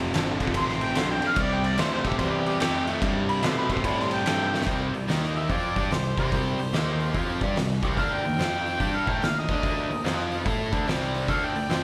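A punchy, distant harmonica with light vibrato, overdrive, slapback echo and digital delay carries the melody from 0.6 seconds in this swaggering, raunchy, swung blues rock and southern rock cut heard live through a club PA, backed by a crunchy double-tracked guitar riff with its own slapback, a growly overdriven picked bass, an oversized low-tuned drum kit with a fat snare and dark cymbals in a pumping stone room, a barely audible tonewheel organ on slow rotary, and, from 5.4 seconds, a very quiet nasal lead guitar with a parked wah playing a second line.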